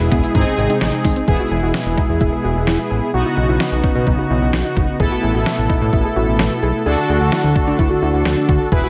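Synth-pop in a melancholic, cool mood, this short cut from a longer piece sets a bold, detuned analog synth brass with vibrato up front over a brassy, airy pad that swells with a moving notch. A fat, ring-modulated analog bass with a filter sweep and a thumpy, overdriven 8-bit drum machine that enters at 0.1 s drive the straight four-beat pulse, while a soft, mellow triangle pluck with tape echo plays arpeggios in the background. The chords shift from G# to E at 1.3 s and on through Badd9, Asus2 and D, all inside a moderate recital-hall reverb.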